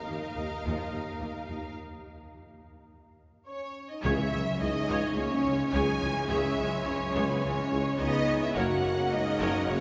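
This dramatic, relentless cinematic orchestral passage, cut from a longer piece, opens with lush bowed strings: a warm violin section carries the melody in the background while a rich, expressive second violin section sings a line beside it, over a soft-attacked string section holding close sustained chords. Just after, violas, cellos and double basses join, with smooth, even violas and cellos sitting in the background and the double basses giving an expressive bowed foundation alongside a distant, roomy, very quiet solo tuba. A mellow French horn section with light vibrato and a tight, smooth top enters at 0.6 seconds on sustained chords and sits most present in the blend. At a moderate 106 BPM in 4/4 with a straight feel, the opening chord gives way to a break, and at 4.0 seconds the music settles into C# dorian on C#m, marked by a brief, very quiet touch of hard-mallet timpani, before moving to F# near the end. 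A clear, very quiet trombone section adds sustained chords from 4.1 seconds, and the whole ensemble is bathed in a wet, lingering cathedral reverb that gives it the scale of a church or concert hall.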